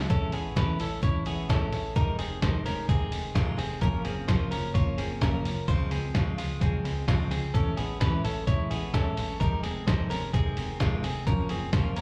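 Jangly indie pop at 129 BPM in a straight 4/4, this breezy, youthful excerpt is cut from a longer piece and sounds like a live gig heard through a venue's PA, with club reverb lending a light sense of space. A full-bodied dreadnought acoustic guitar, picked, carries the accompaniment throughout, while a bright, twangy clean electric guitar recorded direct spins arpeggios colored by analog delay and slapback echo. Underneath, a picked electric bass gives a dark, round, foam-muted tone that stays punchy in the low register. The lo-fi sampler-style drum kit enters at 0.1 seconds and sits up front, pitched down and muffled, with a thumpy kick, a medium-tuned snare and hi-hat that sound re-recorded in a small room. The harmony drifts through Amaj7, Fm7, Gbmaj7 and Dbmaj7 before circling back to Amaj7 at 7.5 seconds.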